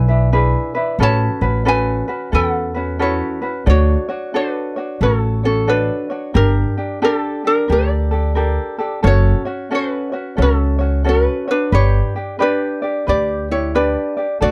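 Close, detailed and nearly dry, this short Hawaiian cut has a dreamy, sunny swing, with a light, fingerpicked ukulele melody up front over a warm, thumb-plucked second ukulele and a dark, woody, thumpy pizzicato upright bass on gut strings, moving from E7 and A69 into a longer passage from 3.7 seconds through Dmaj7, Gmadd9, F#m and G.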